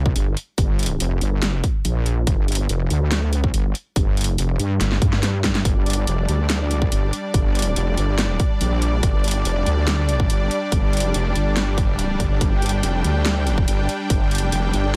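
Heavy wobble dubstep at 142 BPM with a half-time feel in 4/4, chaotic and weighty, cut from a longer track and opening on a G5 chord. An up-front wobble bass drives it from the first moment: a saturated, detuned unison of sawtooth and sine, thickened with chorus and overdrive, compressed yet oddly mellow in its low register. A punchy electronic kick and a layered dubstep kit with a huge snare and metallic hi-hats carry the groove, both tape-tinged and set in a small room ambience. A drum fill at 4.8 seconds leads into a lush supersaw pad at 5.7 seconds, whose bright, soft-attacked sustained chords pump against the sidechain until the end. The mix is dry, with the bass up front.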